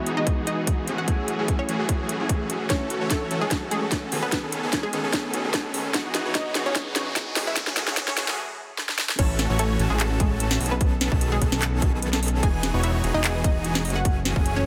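A glossy future bass passage with moderate digital room reverb, at a euphoric, lush half-time feel, where a bright unison pluck melody and huge detuned supersaw chords pump with sidechain over a hard-clipped kick and trap kit of sharp snare, metallic hats, claps and crash. Glassy keys and veiled muted strings drop out early, a soft round pluck and a very quiet riser join the build-up, and at the drop at 9.2 s a fat analog bass and an airy, dreamy lead enter.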